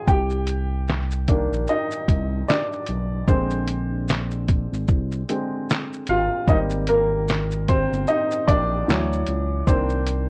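A swung sixteenth-note groove in 4/4 rolls along from a compressed, pitched-down sampler drum kit, where a thumpy kick, fat snare, handclaps, hi-hat and shaker sit up front in this nostalgic, hazy lo-fi hip hop excerpt. A woody upright piano with short sustain and a low-pass filter carries a solo throughout, moving through Cm9, Bb9, Abmaj9 and Dmaj9 before returning to Cm9 at 9.7 seconds, while a dark, sustained synth bass with vibrato and ring modulation holds down the low end from 0.1 seconds. Light reverb and the warbly pitch drift of worn cassette tape lend the recording its faded, hazy character.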